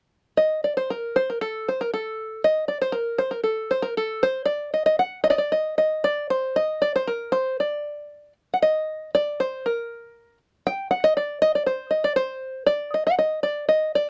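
Klezmer with a bittersweet yet festive mood at 117 BPM in straight 2/4 and D phrygian dominant, carried by a lone fingerpicked open-back banjo, twangy and plunky, sitting up front in light reverb and ranging from A4 to G5 from 0.4 s to 14.1 s, playing one section and repeating it from 8.6 s in this brief cut from a longer piece.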